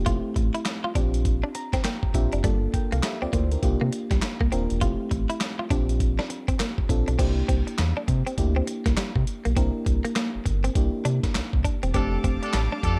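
Confident and slick, this new jack swing R&B groove rides a gritty, thumpy sampler-style drum kit with handclaps and a round, deep analog bass under a mellow FM electric piano that adds a fill at 1.3 seconds and a bright, twangy clean guitar riff with subtle chorus, before floating strings and a clear, vintage horn section with stabs arrive at 11.9 seconds in a dark, dry production.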